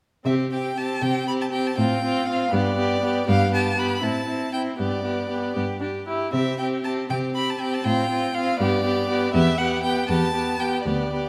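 A quick, spirited classical-period movement for string quartet in C major, moving in 6/8 at 79 BPM. It is cut from a longer piece. The first violin carries a focused melody high above with vibrato, while the second violin holds a smooth, even inner line, the viola adds expressive accompaniment touched with portamento, and the cello grounds the bass with an airy, sul tasto softness. The viola and cello enter at 0.2 seconds and the violins at 0.3 seconds, all playing to 11.3 seconds in a cheerful passage that returns to its opening chord at 6.3 seconds, set in the moderate bloom of a scoring stage.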